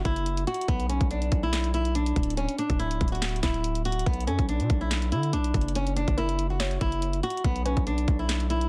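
A dry, dense and heavily limited mix frames this eerie, hard-hitting trap cut in B minor at 142 BPM with a half-time feel, where a fingerpicked flamenco guitar carries the melody up front through tape echo, finger squeaks audible, over a Bm, Dsus2 and F# progression. A saturated, aggressive 808-style bass with a noisy edge sits forward alongside an electronic trap kit of hard-clipped kick, sharp snare, handclaps and bright hi-hats that enters at 0.1 seconds. From 4.3 seconds a soft, round pluck, dark with chorus and tape echo, adds a gentle second line in the background.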